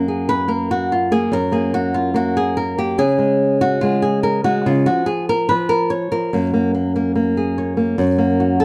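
A lone flamenco guitar carries this short, festive excerpt, its nylon strings fresh and fingerpicked, sitting up front in the mix. The piece moves at a brisk 144 BPM in a straight 4/4, rooted in F# major and tuned slightly below standard pitch. The guitar ranges from its low F# up to a high C#, voicing an F#add9 chord that shifts to C# at 3.0 seconds before returning to F#add9 at 6.3 seconds. A moderate studio reverb lends the playing a sense of space, while the dark overall production gives the proud, celebratory mood a rounded depth. Cut from a longer performance, the passage plays as a single unbroken solo statement from start to finish.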